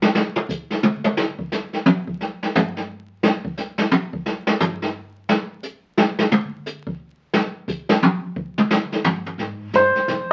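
The recording carries the crackle and aged patina of a very old 78 rpm record, set in a moderate studio room with a short, natural reverb. This sophisticated jazz piano trio swings in 3/4 at 175 BPM in Ab major, in a fragment cut from a longer piece. An acoustic brush drum kit sits up front and carries a drum solo for the first 9.4 seconds, with brushed snare, hi-hat, toms, a medium-tuned snare and a boomy kick. At 9.4 seconds a woody pizzicato upright bass enters low in the mix on an Abmaj7 chord. A clear upright piano follows at 9.8 seconds with a high melodic entry on C5, placed up front, just as the fragment ends.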